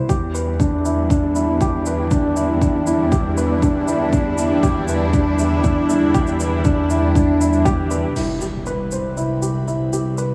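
Piano and strings electronica at 119 BPM in 4/4, intimate and melancholic, moving from Em7 to Cmaj7 at 8.2 seconds in a short cut from a longer piece. A soft, felt-muted upright piano carries the riff up front with tape echo, over a dark, bowed cello section with expressive vibrato holding the bass and pumping to the sidechain, while a thick, detuned sawtooth pad with slow attack sustains chords through chorus and phaser. An overdriven, layered electronic kick drives the beat until 7.8 seconds, with a quieter overdriven shaker and crash alongside, and an electronic impact lands at 8.2 seconds, all set in light small-room reverb.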